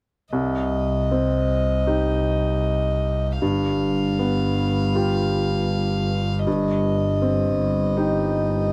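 Longing and reflective, this brief neoclassical fragment for piano and strings moves at a rubato 79 BPM in 4/4 and C harmonic minor, passing from Cm to G7 at 3.4 seconds and settling on Cm/G at 6.5 seconds. An up-front grand piano with a brilliant, polished tone, long sustain and audible action noise carries the accompaniment, while a single violin plays a pure, floating melody that sits distant in the mix. Beneath them a solo double bass, bowed sul tasto with a soft attack, adds a warm low line, all captured in a dry, close 1970s-style studio sound.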